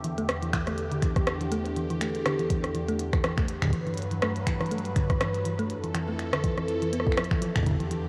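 A swirling, detuned analog pad with phaser and chorus sits up front on sustained chords moving from Em7 to Gmaj7 and Fmaj7, while a round, tine-like thumb-piano-like synth pluck spins gentle arpeggios through chorus and digital delay and a glitchy kit of finger snaps, clicky hats and rim clicks ticks along at 122 BPM with a 16th-note swing, joined at 0.5 s by a deep electronic kick and, at 7.7 s, by a faint flickering grainy texture, giving this intricate, melancholic IDM in E minor a lush hall reverb and the warbly pitch drift of worn cassette tape.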